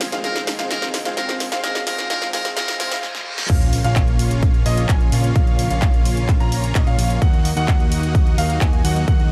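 Euphoric and emotional, this festival progressive house cut runs at 129 BPM in Bb minor, captured mid-piece as a build-up that breaks into a drop at 3.5 seconds. The build opens on an Ab chord with a soft, mellow felt-muted upright piano tucked in the background, veiled con sordino strings sustaining dark chords, and clear grand piano arpeggios ringing high, while a huge, lush supersaw riff and a fat, saturated analog bass pump under sidechain. A brilliant, buzzy trumpet in a metal mute plays a jazz-style solo line on Bb4 from 0.2 seconds, distant and roomy with light vibrato and scooped notes, trailed by digital delay. The big-room drum kit runs drum fills with handclaps, hi-hat, crash and a punchy snare, and a very quiet riser and reverse cymbal lead into the drop. There the upright piano stops, a punchy layered electronic kick lands up front, a sub drop and impact hit, and the harmony moves from Bb minor to Eb minor at 7.2 seconds. 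The mix is dry, with little reverb and a high-pass filter across it.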